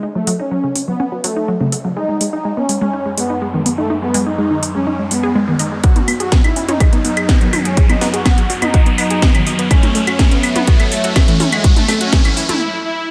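A straight 124 BPM 4/4 pulse drives this hypnotic, dark melodic techno build-up, cut from a longer piece, where a smooth, detuned supersaw melody with phaser, tape colour and delay floats over lush, punchy unison pluck arpeggios, bold brassy synth stabs, a deep, moody pad entering at 3.0 s, a house kit of cracking snare, metallic hats, claves and toms, and a riser, all moving through F#m, G#m, B and A under filter sweeps on the pluck, supersaw and pad, with a punchy, up-front kick arriving at 5.8 s, before everything falls into a brief break at 12.6 s.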